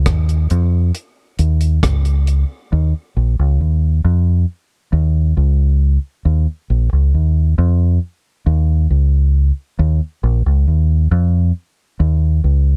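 This dub reggae excerpt moves in a straight 4/4 at 68 BPM, its deep, hypnotic mood set by a fingered electric bass that runs from 0.0 to 12.8 seconds and stays between Bb1 and F2. The bass is dark, round and punchy, a direct, amped sound placed up front in the mix. A reggae drum kit of hi-hat, kick drum and rim click plays only briefly, from 0.1 to 2.5 seconds, with a tight kick and a smooth, rolled-off top on its dry, acoustic tone. After the drums drop out, the bass carries on alone through the second section from 2.7 seconds onward. The recording has little reverb, keeping the sound dry.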